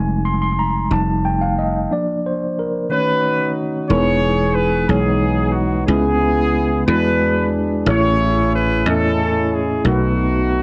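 In a slow, straight 6/8 at 60 dotted-quarter beats per minute, this hopeful, reverent gospel clip opens with a mellow tine electric piano soloing over a growly, foam-muted thumbed slap bass before a smooth-topped horn section with light vibrato and tape echo enters at 2.9 seconds to carry the melody as the harmony settles into E major at 3.9 seconds, all captured in a dry, close 1970s-style studio sound.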